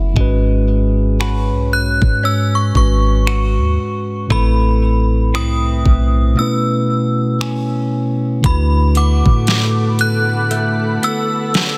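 A slow, swung 58 BPM groove in 4/4 anchors this smooth, dreamy contemporary R&B excerpt in E major, with an up-front electronic drum kit of knocking kick, deep snare with soft clipping, metallic hi-hat and finger snaps alongside a boomy, sine-toned 808-style bass. A mellow tine electric piano carries the chords while a direct-recorded clean electric guitar plays picked, compressed arpeggios through phaser and digital delay, and from 1.7 s an inharmonic FM synth chime rings out the melody with ensemble chorus and delay. After a break at 6.4 s, an ethereal, detuned sawtooth pad arrives at 9.1 s with a slow attack, chorus and reverb, all within a dense, heavily limited modern master.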